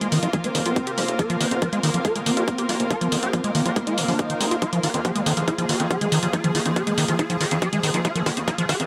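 Intense and psychedelic, this short psychedelic trance build-up is cut from a longer piece and moves in a straight 4/4 pulse. A swarming, aggressive rave lead carries the melody with chorus, phaser, delay and sidechain pumping, while a filter sweeps across it throughout. Beneath it, a squelchy, resonant acid bass plays a riff through its own filter sweep, with chorus, delay and pumping, and an evolving wavetable pad holds sustained chords, morphing with ensemble chorus and built-in reverb. A fat, thick analog bass sits in the background with tube saturation and a high-pass filter, and a reedy chamber string section adds a gut-string, period-style texture, also tucked behind the synths and pumping with the kick. A layered electronic hi-hat ticks from the very start, the tight, up-front electronic kick joins it at 0.3 seconds, and a drum fill drives the final stretch from 4.6 seconds to the end, all set in a light digital ambience.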